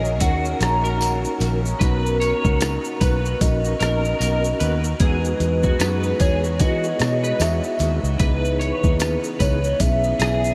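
A warbling, nostalgic lead with a fast attack carries the melody through subtle chorus and analog delay in this mellow, hazy bedroom-pop excerpt, set over a swung 4/4 groove from a gritty, overdriven boom-bap sampler kit with a thumpy kick, rim click, hi-hat and shaker, plus a round, foam-muted vintage bass sitting up front. A twangy guitar at the edge of break-up plays a second line through ensemble chorus and delay. A compressed, picked guitar through a small old amp sits in the background with lush chorus and vibrato, and a soft, flute-like tonewheel organ with key click, chorus vibrato, a stopped rotary speaker and cassette-tape colour adds to the accompaniment as the chords move through D#m7, Bmaj7, Emaj9 and C#m9, while a very quiet, jingly tambourine enters at 0.2 s and the whole mix is soaked in a huge, dreamy ambient reverb.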